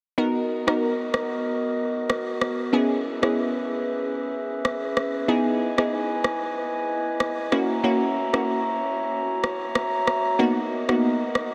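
Afrobeats at 94 BPM in B major with a lightly swung 16th feel, breezy and joyful, moving through Bmaj7, C#m7, Emaj7 and F#7 before landing back on Bmaj7 at 10.4 seconds. A crystalline wavetable pluck with a fast, decaying attack, a filter sweep and chorus carries the accompaniment up front, while a close-miked glass harmonica holds pure, ethereal sustained chords with a slow, smooth attack. A tape-warm electronic rim click enters at 0.7 seconds, and the whole dreamy mix is soaked in a huge ambient reverb.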